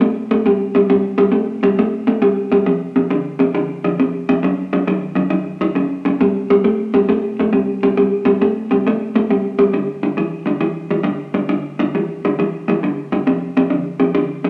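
Swinging at 136 BPM in 4/4, this soulful, gritty blues fragment, cut from a longer piece, features a lone electric guitar through a small old amp, dark, slightly broken-up and compressed, fingered up front in a low register, moving through power chords from C5 to F5 and F#5, back to C5, then up to G5 and down to F5 in a rough rehearsal-room recording with warm saturation and a wet stone-room reverb.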